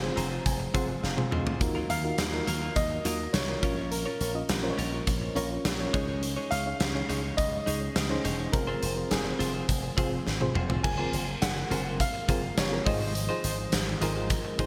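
A big rock drum kit sits up front in this dramatic, moody slice of 1980s-style pop, its punchy kick, medium-tuned snare, toms, hi-hat and crash ringing in a bright stone room with gated reverb, and it has fills at 1.0 and 10.3 seconds. Moving at 104 BPM in a straight 4/4, the piece travels through Fm, Ebmadd9, Bbm and Dbsus2 before shifting to Gbmaj9#11 and Fm7/Ab. An FM electric piano with tremolo opens with a fill and then carries the accompaniment in a dark, decaying tone with a fast attack and a noise layer. A slap bass run through an envelope filter adds a bright, punchy low end, while a clean, compressed, twangy electric guitar recorded direct picks out a riff coated in lush chorus and delay. Above them, an open baby grand piano sings the melody with delay, and at 10.8 seconds a very quiet phased analog pad of detuned sawtooth swirls in with slow, evolving sustained chords. The whole is set in a moderate, lush hall reverb with bright 1980s-style digital production.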